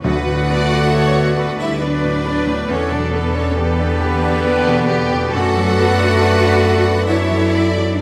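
A rubato 3/4 pulse at 68 BPM carries this uplifting, hopeful cinematic film-score passage in D major, cut from a longer piece, moving through D6, Em7 and D6/F# as a lush violin section sings the melody in the background. Around it, a second, more intense and distant violin section, a mellow clarinet, a very quiet, airy flute group and a gently vibrato oboe weave second lines. A brilliant concert grand piano and a very quiet viola section fill in the accompaniment, a loose French horn section holds sustained chords, and a ringing, fingerpicked harp plays arpeggios. Smooth, close cellos and distant double basses anchor the bass, and articulate timpani struck with hard mallets sound only until 1.3 s, all captured with close, detailed microphones and light reverb.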